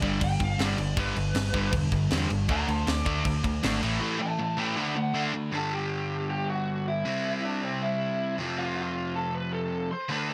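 Light reverb wraps this rowdy, energetic punk rock fragment at 158 BPM in G major. A lo-fi lead guitar through a small cranked amp, overdriven with digital delay, solos over a crunchy up-front rhythm riff, a bright semi-hollow guitar in the background, and a dark, double-tracked fuzz guitar kept very quiet, while a growly, punchy picked bass and a tight studio-room kit with a high-tuned snare and rolled-off top drive the opening. The drums stop at 3.9 seconds and the bass at 4.0, and after 5.5 seconds only the lead and crunchy guitars carry on.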